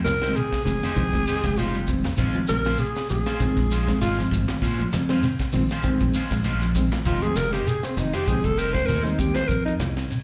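Heard through a club's PA with light reverb and small-room ambience, this short cut from a longer afrobeat piece moves at 99 BPM in F minor, defiant and intense, as a breathy, raspy alto saxophone with vibrato and slapback echo sits up front, soloing over Fm9 and Bbm9 chords. A round, punchy fingered bass and a tight funk kit with a high-tuned snare anchor the groove, while a reedy electric piano with fast tremolo comps and a twangy, slightly broken-up guitar adds stabs. A grainy, mellow shekere adds close, dry texture, while ringing high-tuned congas and a dark, clean semi-hollow guitar playing arpeggios fill in the background.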